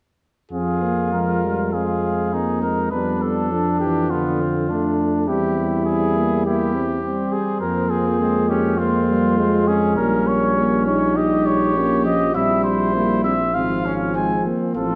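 Flowing in a rubato four-beat pulse, this heroic yet grave classical brass quintet passage sets a mellow lead trumpet up front over a punchy, distant second trumpet with light vibrato, a dark French horn, a soft-attacked background trombone with vibrato and a clear, roomy bass trombone, all five sounding together from 0.5 to 15.0 seconds in a reverberant recital hall as the minor-key harmony moves through diminished and dominant seventh chords.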